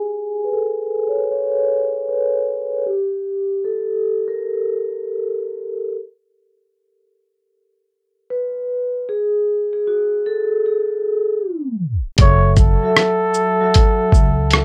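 A ringing vibraphone, played with soft mallets and a slow motor vibrato, opens this reflective, hazy lo-fi hip hop piece alone, its boxy, cassette-tinged tone filtered by a sweep that runs until 12.2 seconds, with a tape stop from 11.4 seconds. At 12.2 seconds a breathy flugelhorn enters up front with scooped notes and jazz-style vibrato over an F#m7 chord. It is joined by a woody pizzicato upright bass and a gritty, overdriven sampler-style kit of thumpy kick, hi-hat, rim click and shaker, all swung and touched with light reverb.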